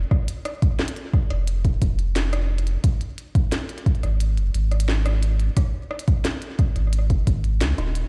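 IDM with a glitchy, intricate mood, moving in a straight 4/4 feel across a short section cut from a longer piece. A deep, round sine sub bass sits up front from the start, its fast attack giving way to sustained, mellow low notes that anchor the whole 8 seconds. An electronic kick drum, soft yet overdriven, shares the front of the mix and carries the pulse until about 7.4 seconds. Around it, a glitchy drum kit scatters clicky hi-hats, rim clicks and a tiny snare, pushed through overdrive and digital delay and set lower in the balance. Both drum parts sound re-recorded in a small room, while the overall sound has the stony reflections of a big sound system playing in a bare space.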